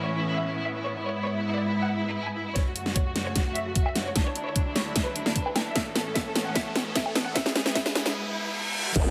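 In a half-time 4/4 feel, this menacing, heavy wobble dubstep excerpt opens with a lush violin section singing an expressive, vibrato-rich melody through dub echo over sidechain-pumped symphonic string chords, before a knocking electronic kick and an up-front kit with a huge snare, hi-hat, crash and woodblock drive a build-up with a drum fill and filter sweep from 2.6 seconds, background risers and a reverse cymbal climb, and a saturated, growling wobble bass with chorus and overdrive bursts in at 9.0 seconds.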